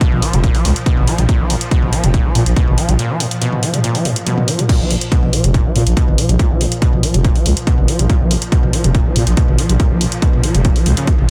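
Driving peak-time techno with an industrial, dark mood, cut from a longer piece and set in a straight 4/4 pulse. An up-front, layered electronic kick leads the mix, while a punchy analog drum machine adds crash cymbal, hi-hat and toms with the airy sense of a large room. Underneath, a growling, thick FM bass gives weight and pumps with sidechain compression, as an overdriven acid bass riff squelches and bites with a gritty, resonant sawtooth edge, lightly chorused and trailed by dub echo. A swarming, detuned drone fills the background with tense, evolving granular texture and its own reverb, also breathing with sidechain pumping. A break arrives at 3.0 seconds, capped by a drum fill from 4.3 to 4.7 seconds before the groove resumes, and the overall sound stays dry and loud.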